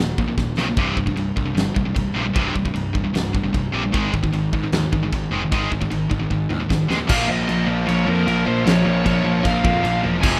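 Heavy and aggressive, this straight-feel heavy metal clip, cut from a longer piece, opens on a bright, overdriven electric guitar riff up front, joined in the background by a high-gain distorted guitar and anchored by a growly, fuzz-laden picked bass. A big acoustic rock kit with a fat snare and punchy kick sits forward in the mix, its china, crash, toms, kick and snare carrying a dark, smooth, big-room character, with drum fills at 0.4 and 6.3 seconds. At 7.1 seconds the drums drop into half time and the harmony moves to a Bb minor chord. There a high-gain lead guitar with a shadowy tone enters with a melody, joined by a warm, double-tracked crunchy guitar riff in the background. A small room reverb and a rough home-demo mix give the whole a raw, unpolished edge.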